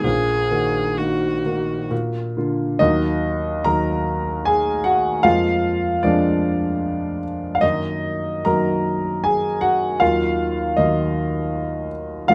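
A rich, smooth viola with vibrato and a warm concert grand piano open together in this solemn, melancholic fragment of a romantic classical duo, moving in a rubato triple metre. The bowed viola line is brief and even, falling silent at 1.9 seconds, while the piano carries on through 12.3 seconds with deep bass and audible action noise. Both instruments sit up front, the piano sounding intimate and natural, captured by close, detailed microphones with light reverb.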